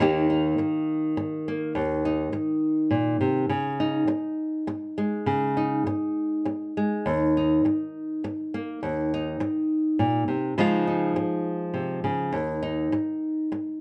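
The recording sits in a moderate studio reverb with a mellow, rounded top end, placing a single nylon-string guitar up front. This is gentle folk played as solo fingerstyle guitar, in a classical manner, with a warm, gentle mood. The piece moves in three with a rubato feel, so the pulse breathes freely. The fingerpicked guitar ranges from a deep Eb2 up to G4, moving through Eb, Dbsus2, Eb5 and Dbadd9 before settling back on Eb5 at 12.3 seconds. The passage is cut from a longer piece and runs just under 14 seconds.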